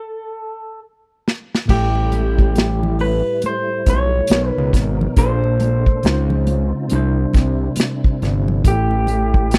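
Punchy acoustic drums played with bundle sticks enter at 1.3 seconds, joining a slightly broken-up, lo-fi electric guitar melody with slapback echo. At 1.7 seconds a fat, detuned sawtooth bass with a filter sweep settles in up front, alongside a worn, slightly out-of-tune tine electric piano, a clear tonewheel organ with key click and slow rotary speaker, and damped, very quiet congas. The result is an introspective, sultry neo-soul and R&B groove at 69 BPM with a swung 16th feel, captured as a dry, close 1970s-style studio recording in a small room.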